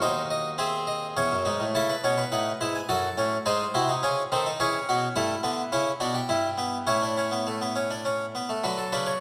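Classical baroque-style four-part fugue for solo harpsichord at 105 BPM in 3/4, contemplative yet driving, its airy, brilliant, plucked French-style tone with octave strings sitting up front in a wet recital hall reverb, with chords moving through C#m and F#m before settling into D major from 5.2 s in this short cut from a longer piece.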